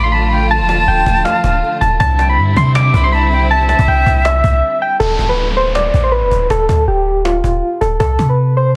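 Melancholic yet hard-hitting, this trap-leaning hip hop excerpt moves at 160 BPM with a half-time feel in D dorian, cut from a longer piece. Soft, round electric-piano-like synth keys carry the melody up front, treated with chorus, tremolo and delay, while a deep, boomy 808-style bass anchors the low end and a woody, band-limited cajon with faint snares supplies the beat. An airy, distant jazz flute with a crisp chiff traces a second line through delay and drops away at a brief break around 4.6 seconds, while a lush, bowed string section holds sustained chords with vibrato and portamento until 5.0 seconds. From 5.0 seconds the hi-hats fall silent and an electronic downlifter sweeps through as the harmony returns from Cadd9 to Dm before the chords stop at 8.0 seconds. Light small-room ambience sits under a dense, heavily limited modern master.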